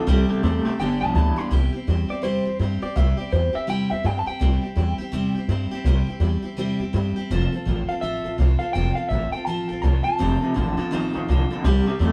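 Upbeat, rowdy rockabilly at 166 BPM in C major with a swung feel, cut from a longer piece, where a woody, thumpy upright bass on gut strings drives beneath a bright, full-bodied jumbo acoustic guitar picking accompaniment throughout, a twangy, slightly broken-up electric guitar with tremolo plays a low riff at the opening and again from 10.2 seconds, and a lo-fi electric guitar through a small old amp carries the melody, all captured live in one room with moderate reverb.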